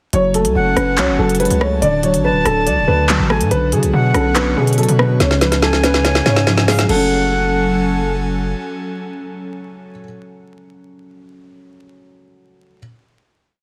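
Drill hip hop at 142 BPM in a half-time feel, dark and tense in F# harmonic minor, opening on a hook where a boxy grand piano loops a tape-echoed melody over a rising eighth-note arpeggio from a felt-muted upright with audible action noise, while a detuned, chorused pad breathes sustained chords in the background. An overdriven drill kit with a woody snare, crisp skipping hi-hats with fast rolls, handclaps and rim clicks sits up front beside a distorted, aggressive 808 bass holding long sub notes with pitch slides, and a reedy flute with vibrato adds a sparse, echoed counter-melody. A drum fill runs from 5.2 to 6.9 seconds before the piece settles on a final F#madd9 chord, all under light room ambience, vinyl crackle and a dense, heavily limited master.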